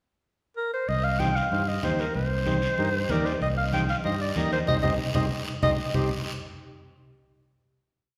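Bathed in the long, wet reverb of a recital hall, this brief, driving and passionate cumbia in C minor at 190 BPM opens with a pickup bar from an up-front solo clarinet, its subtone, vibrato and scooped notes shaping jazz-style hook phrases, joined at 0.9 seconds by a dark, round fingered electric bass on a cumbia figure, soft-handed low-tuned congas in the background and a raspy, close guiro, then at 1.2 seconds by reedy vintage combo organ chords, before a band accent and a drum fill lead into a final chord at 6.0 seconds.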